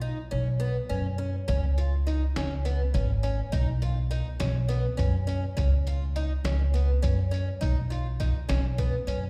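A picked twelve-string acoustic guitar and a dark, steel-strung pizzicato upright bass open this bright, driving progressive instrumental excerpt in B lydian: the guitar plays boxy, shimmering, octave-doubled arpeggios with a slapback echo, while the bass sits up front. A muffled, pitched-down sampler-style drum kit with a thumpy kick, a medium-tuned snare and hi-hat joins at 1.5 s, carrying the 7/8 pulse at 206 BPM in eighths as the harmony moves from B5 to C#5 and B, passes through a chordless stretch at 5.6 s, and returns to B. The band sounds like a live gig heard through a venue's PA, with small room ambience and recital hall reverb.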